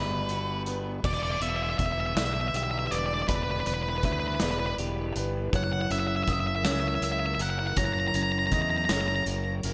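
Cinematic and melancholic, this short post-rock passage in a straight 6/8 feel unfolds in a big arena-sized hall. Up front, an octave-fuzz lead guitar carries the melody in a dark, distorted voice with slapback echo and digital delay, falling silent at 9.2 s. Beside it, a punchy fingered electric bass growls with overdriven fuzz. Tucked behind them, a clean semi-hollow electric guitar picks arpeggios through spring reverb and echoes, a soft felt-muted upright piano adds mellow, intimate arpeggios with audible action noise, and a deep, moody analog pad holds slow-attack chords with a subtle chorus. A big acoustic rock kit with a boomy kick, medium-tuned snare, hi-hat and crash enters at 0.3 s, and the harmony moves from Gmaj7 to Em7 at 1.0 s and later to F#7.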